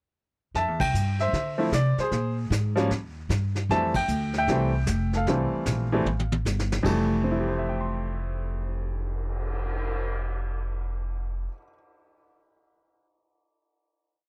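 A woody, pizzicato upright bass walking on steel strings and a vintage brush drum kit with snare sweeps, dark cymbals and a punchy kick open this short, sophisticated and playful swung jazz piano trio piece at 152 BPM in F major, joined at 0.6 s by a brilliant upright piano with short sustain playing motif-based phrases and syncopated rootless comping, the band accenting together at 0.7 and 3.9 s before a drum fill at 6.1 s leads into a held final chord, all captured in a dry, close 1970s-style studio sound with light reverb.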